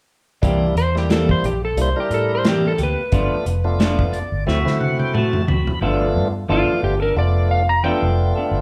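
A full, key-clicking tonewheel organ through a slow rotary speaker and light overdrive, clean hollow-body guitar stabs, a round, punchy foam-muted bass up front and a dark, smooth soul kit with a tight kick open this laid-back, rollicking soul blues fragment together at 89 BPM in G mixolydian, before a slightly broken-up slide guitar takes the melody at 0.8 s over C7, G7 and D7, with organ and drum fills leading to 5.8 s, where the drums stop and the band moves to G9 in a moderate large-room reverb.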